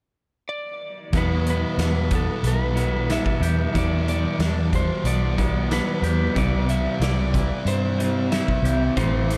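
A straight 4/4 pulse at 92 BPM drives this hazy, brooding shoegaze and dream pop fragment in E minor, where a lightly driven, compressed lead guitar sings its melody alone through analog delay from 0.5 s before the full band arrives at 1.1 s on Em7, shifting to C at 6.4 s. A distant, roomy indie drum kit with a punchy kick and medium-tuned snare sits behind an up-front, round, foam-muted bass, while a fuzzy picked guitar riff with subtle chorus joins a dark, overdriven semi-hollow riff swathed in reverse reverb. In the background, a clean, twangy fingered guitar spins arpeggios through chorus and delay, and the whole mix is soaked in a huge, dreamy ambient reverb.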